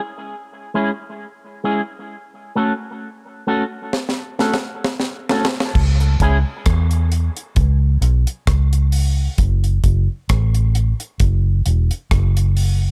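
A dark, round, foam-muted fingered electric bass with a punchy, amped tone enters at 5.8 s and anchors this heavy, meditative dub reggae excerpt in F# minor at 66 BPM with a swung sixteenth feel, joining a deep, dry acoustic drum kit with a high-tuned snare and tight kick that arrives on a fill at 3.9 s, and a twangy, scooped envelope-filtered electric guitar, bathed in lush chorus and dub echo, which picks out the C#m and F#m changes before dropping away at 6.4 s, the whole piece framed by a studio reverb.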